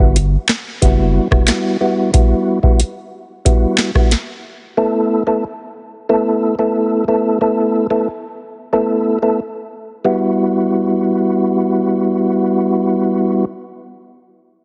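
A mellow, flute-like tonewheel organ sits up front through this tough, bouncy dancehall excerpt at 91 BPM in E minor, its clean, percussive tone marked by key click, chorus vibrato and a fast rotary speaker. It carries the harmony from start to finish, moving from Emadd9 to Asus2 at 4.8 seconds and returning to Emadd9 in the closing section. Underneath, a thick, saturated sub bass with a fast attack lands at the opening and stops at 1.4 seconds. A dry, booming analog drum machine with a deep kick, crisp snare, metallic hi-hats, rim clicks and handclaps punches in a fraction of a second later and drops out at 4.3 seconds, leaving the organ alone. Light reverb and heavy multiband compression give the piece a dull, boxed-in radio sound with its highs cut off, and it is cut from a longer piece.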